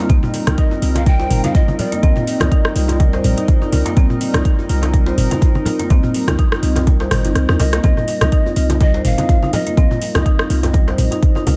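An echo-heavy, lightly reverberant afro house excerpt at 124 BPM in C minor, hypnotic and driving, where an up-front deep electronic kick drives a boomy sine 808-style bass that pumps beneath a moody detuned analog pad with chorus and phaser, smooth marimba arpeggios with dub echo, a metallic-hatted drum kit with rim clicks, shaker and toms, soft close congas, a rattling band-limited djembe in the background, and breathy cane pan pipes with vibrato and 12-bit grit that sing from 0.6 and again from 7.6 seconds, just after the kick drops out for a drum fill at 7.4 seconds.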